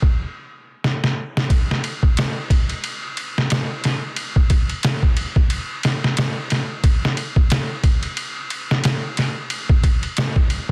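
Smoky and dark, this short trip hop excerpt sits at 90 BPM in 4/4, with a 58% swing on the sixteenths. A sampler-style drum kit carries the whole piece, built from kick drum, snare and ride cymbal. The kit sounds gritty and pitched down, with a thumpy kick and a medium-tuned snare. It is compressed, re-recorded in a small room, and sits up front. Near the start there is a stop from 0.2 to 1.5 seconds, and a drum fill enters at 0.8 seconds before the groove settles in. Little reverb and a dense, heavily limited modern master keep the sound close and tight.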